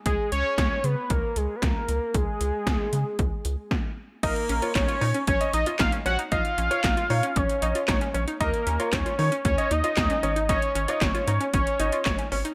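Light reverb and a digital ambience frame this cool, driving synth-pop excerpt at 115 BPM in straight 4/4, cut from a longer piece. A fat, detuned analog lead carries the melody up front with chorus, delay and vibrato, while a rubbery, hollow square-wave bass bounces underneath with a dark, sustained tone. The 80s electronic pad drums are overdriven and punchy, with a gated snare, metallic hi-hats, handclaps, crash cymbal and a short room on the claps and hats. A brief stop from 3.7 to 4.2 seconds leads into the second section, where an intimate concert grand piano with audible action noise adds a delayed second line and a round, bright analog pluck plays chorused arpeggios. The harmony moves through Bbm and settles on Absus4 near the close.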